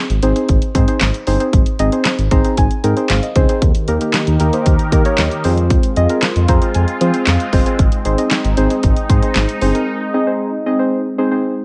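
Muted, felt-like synth keys with a dark, intimate tone and chorus open this nostalgic, wistful synth-pop piece in Ab major at 115 BPM. They are joined almost at once by a smooth, mellow synth bass and an up-front electronic drum kit with a punchy kick, fat snare, hi-hat and handclaps, while the keys step forward with short fills. A sweeping, resonant pad of detuned sawtooth tones enters at 3.6 seconds to hold chords over the Ab, Eb and Fm harmony, and by 9.9 seconds the bass and drums have dropped away, leaving keys and pad in a break under light digital reverb.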